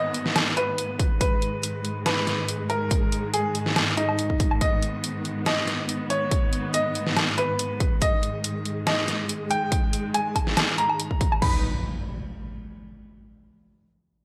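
Heavy wobble dubstep in a half-time feel, aggressive and weighty, where a clear, worn grand piano carries the melody through digital delay over dark, lush bowed strings with vibrato and 12-bit sampler grit pumping against the sidechain, while a deep-snared electronic kit with crash, hi-hat and woodblock sits up front, joined at 1.0 seconds by a punchy layered kick, all framed by electronic downlifter and impact effects at the start and again from 11.4 seconds in this short cut from a longer piece.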